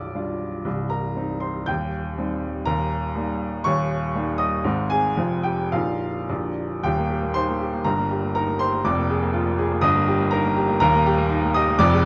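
A baby grand piano carries this brief classical virtuoso study on its own, sounding open and up front across a range from Bb0 to G6. The mood is heroic and brilliant, in Eb major at a flexible 104-126 BPM in 2/4, with a rubato feel that lets the pulse breathe. The harmony opens on G7/B and moves through C minor and an Eb7 toward Ab and F minor, then settles on Bbsus4 and Bb just before the second section begins at 6.8 seconds. That closing passage dwells on Eb, touching Eb/G and Bb7/F before landing back on Eb at 10.8 seconds. Light reverb and a dark, warm production round out this fragment of a longer piece, which runs to 12.1 seconds.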